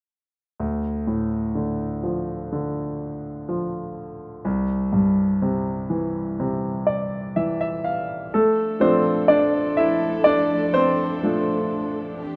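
A clear, up-front concert grand piano carries this melancholic, heartbroken pop ballad in D minor at a slow 62 BPM, its deep bass and short sustain shaping accompaniment chords that move from Dm to C, with a fill at 6.4 s. At 8.3 s the harmony returns to Dm as the piano takes a solo turn and a lush, bowed studio string section enters softly beneath it with smooth vibrato. Light reverb and studio ambience frame this rough home-demo mix, which is cut from a longer piece.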